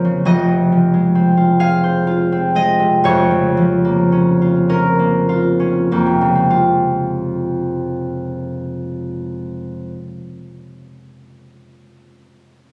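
A solo concert harp opens this brief, gentle and mysterious classical fragment in F minor, its ringing, fingerpicked tone sitting up front across a span from F1 to F5. In a slow, rubato 6/8, the music eases down over the first 6.5 seconds, moving from F minor to B-flat minor over F and back to F minor. The sound is wet, carrying a recital hall's reverb plus club reverb and compression, with the roomy character of a phone recording made in the hall.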